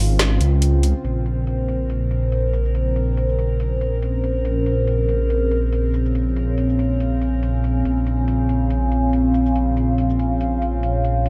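A dark, cavernous production with light digital ambience frames this meditative deep dubstep excerpt in Bb minor, moving at 141 BPM with a half-time feel and a gentle swing on the sixteenths. From the first moment, an overtone-sweeping drone holds sustained Bbmadd9 chords, its resonant, ring-modulated tone blooming slowly with moving overtones, chorus and a long reverberant release sitting up front. Beneath it, a detuned saw bass rumbles low from the start, its beating, sawtooth-and-sine body deep and mellow yet forward in the mix. At 0.2 seconds a layered electronic garage kit enters, pairing a woody snare with metallic hi-hats and shaker, all roughened by overdrive and softened by low-pass filtering. The harmony rests on the same chord throughout, so the piece lingers in a hovering, subterranean stillness until it cuts off at 11.3 seconds.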